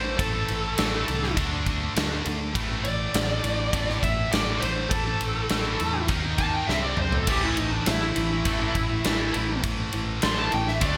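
Aggressive and menacing, this hard rock passage cut from a longer piece sets a dark, high-gain lead guitar solo up front over a chorused cranked stack guitar and a double-tracked tight distorted guitar riffing, a round, punchy fingered electric bass, and a huge arena drum kit with gated reverb and a fill at 6.7 seconds, before a further overdriven guitar joins the riff in the background at 7.3 seconds, framed by bright 1980s-style digital production.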